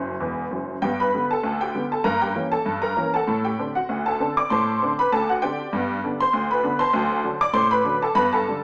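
A lightly swung sixteenth-note lilt in 2/4 drives this lively, cheerful ragtime clip, played by a solo honky-tonk upright piano that sounds detuned, jangly and bright, sitting up front in a wet, large studio room. A brief fill opens the first 0.8 seconds before the main strain begins, moving through G, G diminished seventh and D7 harmonies. The vintage piano's range reaches from deep bass notes to sparkling high ones.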